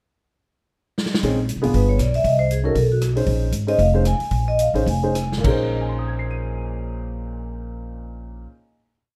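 A brisk swing in 4/4 at 199-236 BPM, with lightly swung eighths, drives this short, moody small-group jazz piece in Bb minor. Near the end of a pickup bar, the big-band drum kit plays a fill at 1.0 seconds and then keeps time on the hi-hat with sticks, its punchy kick, medium-tuned snare, rim clicks and crash cymbal sounding natural in a big room. The pizzicato upright bass, steel-strung and up front, plays a two-feel line low in its register, while the woody upright piano comps in syncopation with rootless voicings through Bbm11, G7b9, Cdim and Badd9 before returning to Bbm11. Shortly after, the vibraphone, played with medium mallets and the motor off, states a bebop-style theme in a metallic, ringing, airy tone, bathed in plate reverb. The group slows down from 3.3 seconds into a final chord at 5.4 seconds, where the piano's tone rings on last, all within a light reverb.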